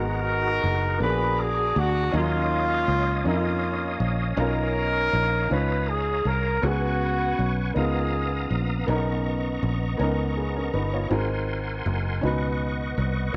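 Hopeful and soulful, this slow gospel passage in 6/8 at 54 BPM, cut from a longer piece, sets a roomy, jazz-style horn section carrying the melody up front until 8.8 s over a woody, vintage upright piano with short sustain, a reedy, bright tonewheel organ holding chords with key click, chorus vibrato and a slow rotary speaker, and a punchy, foam-muted fingered electric bass, all in light reverb as lush extended chords move from G#m9 to a closing C#9sus4.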